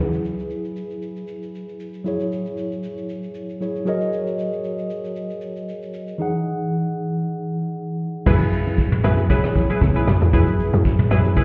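A clean tine electric piano sits up front through a low-pass filter, carrying a filter sweep over F#9sus4, F#69 and Emaj9 chords in this soulful amapiano cut, moving at 116 BPM with a light swing on the 16ths. A dark, smooth vintage brush drum kit with a tight kick, hi-hat, rim click, shaker, toms and crash cymbal accompanies it from the start. At 8.3 seconds the punchy FM log drum bass arrives with a noise layer and fast, decaying attacks, joined by bright, detuned sawtooth chord stabs with chorus and tape echo and softly played, ringing congas, all heard muffled as if through a wall in a stone room.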